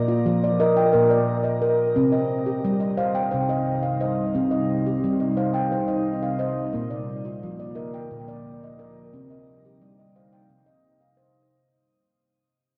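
A straight 7/8 pulse at 176 BPM counted in eighths carries this meditative, hypnotic world piece in C minor, cut from a longer work, where a bright, ringing nitrided-steel handpan plays up-front arpeggios with sharp finger strokes through cassette tape, analog delay and airy shimmer reverb from the start, a deep, moody pad of detuned unison sawtooth over a sine sub octave enters at 3.3 seconds with slow-attack sustained chords, chorus and a long dark release, and the whole homemade cassette recording sits in a wet spring reverb as it fades out over Bb and Cm.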